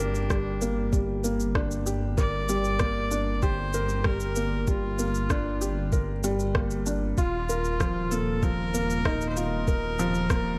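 A felt-muted upright piano sits up front in this intimate, cinematic piece of piano and strings electronica, its soft, mellow riff carrying audible action noise and a touch of digital delay. Beneath it, a dark detuned saw bass rumbles deep and beating, its sustained sawtooth tone pumping with sidechain compression. A bright viola carries the melody from D4 to D5, a single bowed player with light vibrato, an airy, nasal edge and an earthy grain, also touched by digital delay. An electronic shaker and rim click enter at 0.1 seconds, electronic and produced, tape-warm and re-recorded in a small room, followed at 0.3 seconds by an electronic kick drum, a soft, tape-colored thump with the same roomy character. Set at 96 BPM in straight 4/4 and G minor, the music moves from Gm to Ebsus2 at 7.2 seconds within a dark production wrapped in light reverb and digital ambience, cut from a longer piece.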